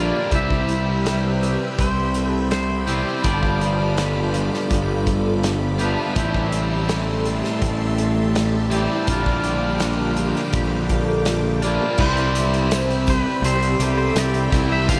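A dreamy, reverb-soaked hall wash frames this blissful, hazy shoegaze and dream pop excerpt in C major at 82 BPM, where a fuzz-thick bass sits up front beneath a biting chorused overdriven riff, a twangy guitar riff colored by reverse reverb, octave-doubled twelve-string arpeggios with finger squeak, and shimmering vintage sawtooth string-machine chords, while a loose indie drum kit with dark cymbals enters at 0.3 seconds, a bright clean lead guitar with lush chorus and delay sings at the start and returns at 12.0 seconds alongside a very quiet jingly tambourine.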